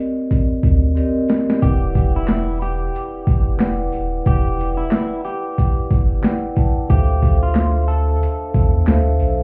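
A mellow vibraphone with soft mallets and a slow vibrato opens this moody, gritty boom-bap hip-hop excerpt at 91 BPM with a swung 16th feel. It is soon joined by an overdriven, thumpy sampler-style drum kit of kick, snare, hi-hat, handclaps and shaker, very quiet jingly sleigh bells, and a deep, thick saturated sub bass up front. A dark, slightly broken-up electric guitar melody with digital delay enters at 1.6 s after a drum fill, as the harmony moves from Cm9 to Em9 and later to Dm9, all heard muffled as if through a wall with club reverb and vinyl crackle.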